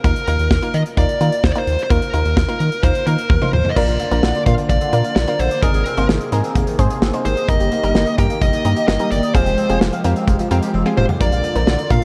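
Synth-pop with a cool, driving feel, this excerpt sets a dark, smooth overdriven lead guitar up front with analog delay over a chorused, detuned analog pluck, a round, deep analog bass and a punchy, mid-forward studio drum kit that fills at 3.3 seconds, before a swirling phased pad in the background and an airy, delayed harpsichord with two sets of strings join at 3.8 seconds, all wrapped in a lush hall reverb.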